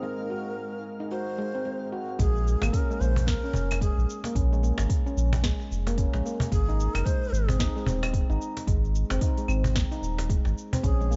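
A swung 16th-note groove at 111 BPM in 4/4 carries this meditative organic downtempo piece, where a breathy low wooden flute with delay and ringing nitrided-steel handpan arpeggios with delay open over an ethereal chorused pad with tremolo and sidechain pumping and a twinkling granular shimmer, until at 2.2 s the pad and shimmer give way to a round, up-front sine sub bass, a deep electronic kick and an afro-pop kit of cabasa, claves, smooth hi-hat and sharp snare, joined from 2.6 s by a snappy, hard-handed cajon, all in a dark, dry production as the chords move from Ab7 to Bbm7.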